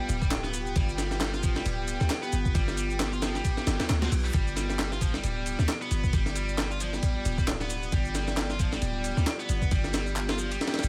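Funky and swaggering, this short breakbeat cut from a longer piece rides a swung sixteenth-note groove in 4/4. A sampler-style breakbeat kit drives it, gritty and pitched up, with a thumpy kick, a high-tuned snare and ride cymbal carrying a tape-warm, compressed edge. Layered electronic shaker and handclaps sit quietly beneath, their overdrive giving them a produced bite, while a deep, boomy 808-style bass with a sine tone and fast-attack, decaying notes sits up front. A bright, double-tracked high-gain guitar picks out a distorted riff through a delay, and a moody, warbling sawtooth pad holds sustained chords on a G7 harmony, swathed in chorus and built-in reverb as it pumps against the sidechain. Around 3.9 seconds a very quiet reverse cymbal slips in briefly, and the dry mix keeps every part close.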